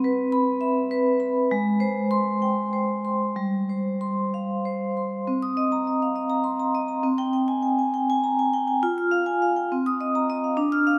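This is a contemporary classical piece for solo vibraphone, cut from a longer work, with a reflective, hypnotic mood. It moves at a rubato 62-70 BPM in 6/8, counted in dotted quarters, and sits in C minor. Played with medium hard mallets from G3 to F6, the vibraphone sounds metallic, ringing, dark and smooth, with a slow motor vibrato, and it is placed up front. The harmony opens on Cmaj7, Abmaj7 and G7sus4, then at 5.3 seconds shifts to a second section that moves through Cm7, Abmaj7/C and Fm before returning to Cm7 at 9.7 seconds. A wet church reverb with a 3.7-second decay surrounds the instrument.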